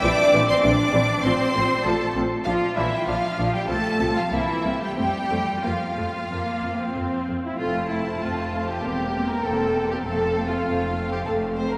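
Clear, intense second violins sit up front beside a focused first-violin melody, expressive violas with portamento, and a rich bowed foundation of cellos and double basses, in this lively, graceful excerpt from a quick classical-period movement for string orchestra in F major at 90-100 BPM, its rubato 4/4 phrasing bathed in a long church reverb.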